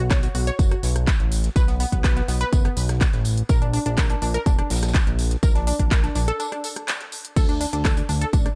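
Progressive house with a hopeful, euphoric mood, this short cut from a longer piece drives on an up-front, punchy electronic kick. Around it sits a layered house kit of crisp hats, handclaps, rim clicks and crash cymbal, with sidechain pumping on its hats and cymbals, and a dry acoustic kit with a high-tuned snare, hi-hat and tambourine tucked in the background. Beneath these runs a fat, detuned sawtooth bass that pumps with the sidechain, while a lush, wave-folded unison pluck plays pumping arpeggios through delay and a filter sweep. It is all set in a small room reverb, with a break from 6.4 to 7.4 seconds.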